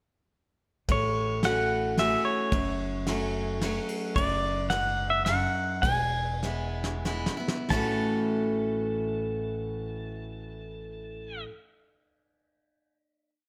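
At 0.9 seconds a complete honky-tonk and classic country band enters together in a sunny, down-home waltz in 3/4 and A major, moving at a relaxed tempo between 88 and 110 BPM. The pedal steel guitar takes the solo up front with a clean, compressed tone, played with fingerpicks, slide and volume swells, and trades in answering blues licks. Beneath it, a bright, full-bodied dreadnought acoustic guitar with fresh strings alternates bass notes and strums, adding bass runs. A woody, thumpy pizzicato upright bass plays root and fifth, and a soft brush kit in a small room gives a dark, smooth groove with a tight kick, a medium-tuned snare and a rolled-off top. From 4.2 seconds the band slows, a drum fill leads to the close, and at 7.7 seconds the music settles onto a final A6 chord that rings out in moderate plate reverb.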